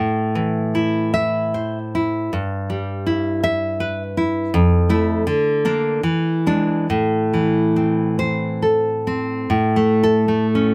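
Intimate and melancholic, this romantic solo classical guitar excerpt in A minor drifts in a rubato 3/4 at 67-84 BPM, its full-bodied, fingerpicked nylon-string guitar sitting up front under close, detailed microphones with light reverb as it moves from Am through Em/G, Fmaj7, Bb/D and E7 back to Am before turning to A major at 9.5 seconds.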